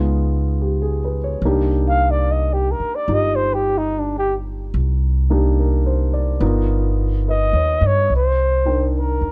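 A dark, close-sounding production with little room ambience gives this short cut from a longer jazz ballad a smoky, wistful air in a relaxed swung 4/4. A mellow grand piano sits low in the mix, supplying shaded accompaniment over rich extended chords that settle into a minor ninth and lean on an altered dominant. An up-front upright bass, plucked on steel strings, adds a woody, warm foundation in its low register throughout. At 1.9 seconds a breathy flugelhorn enters with the melody, its whispered, soft-attacked tone and gentle vibrato lending an intimate quality, with a touch of plate reverb around it. The flugelhorn's solo carries through to 8.1 seconds, when the harmony returns to the minor ninth as a new section begins.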